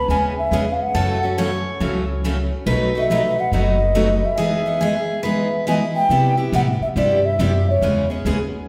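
Charming and lively, this short cut from a longer piece is acoustic string swing in the jazz manouche style, moving at 140 BPM in 4/4 with a swung eighth-note feel. A clay alto ocarina carries the melody with an airy, hollow tone, soft attack and vibrato, heard close and intimate. A picked jumbo steel-string guitar plays a second line until 6.1 seconds, its fresh strings ringing full-bodied with audible finger squeak, while two more picked guitars supply accompaniment: a boxy parlour model and a bright, full-bodied dreadnought. Underneath, a pizzicato upright bass sits up front with a woody, thumpy sound. The harmony moves from C#m7 through F#m7 and B7 to Emaj7, then shifts to Cmaj7 around 6.1 seconds before returning to C#m7, and a recital hall reverb lends the ensemble a spacious, resonant setting.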